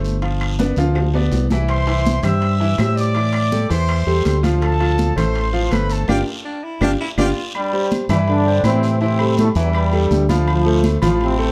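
A dark, lightly reverberant production carries this festive, joyful salsa excerpt at 164 BPM in C major. A round, punchy fingered electric bass sits up front beneath a brilliant grand piano with audible action noise, while background congas, ringing timbales and agogo bells, a raspy guiro and faint woody claves fill out the percussion. A tight, bright trumpet section with tape echo carries the melody from 1.7 s, a gritty, distant baritone saxophone slips in briefly at 6.5 s amid a drum fill and band accent, and a vintage trombone section with vibrato takes over the tune from 7.6 s.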